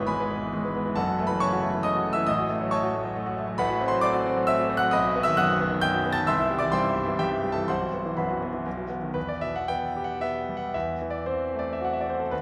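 A romantic classical character piece for solo piano, this brooding, passionate passage moves in a flexible, rubato 3/4 at roughly 112-138 BPM, settling into E minor from 3.6 seconds. The concert grand is bright and brilliant, sitting up front with a polished, present tone and deep bass, and its writing spans F#1 to A6. The harmony drifts through F#m7 and diminished colour toward B, touches C, and leans on a Bsus4 before resolving to B and landing on Em at 9.2 seconds, where a new section begins. A final F#m7b5 over E leaves the music unsettled as this fragment of a longer piece breaks off at 12.4 seconds. A heavy cathedral reverb with a long 5.2-second decay surrounds the piano, giving the sound of a church or concert hall.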